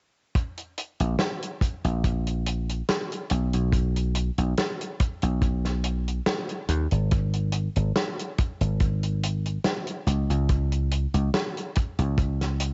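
A bright, punchy thumbed slap bass anchors this woozy, nostalgic vaporwave piece, its foam-muted electric tone sitting dry and direct up front between G#1 and D#2 after it enters at 1.0 seconds. Beneath it, a tight, mid-forward acoustic kick starts at 0.4 seconds alongside a soul drum kit of hi-hat and a medium-tuned snare whose gated reverb gives the kit a little space of its own. Both drum parts have a warm, rolled-off top and sit up close. The groove moves at a relaxed 71 BPM in 4/4 with a light 54% swing on the sixteenths, and the tuning rests slightly low at A4 = 436 Hz. The overall sound is dry and hazy like a cassette tape, with the highs shaved away. This short cut from a longer piece stays in a single section throughout.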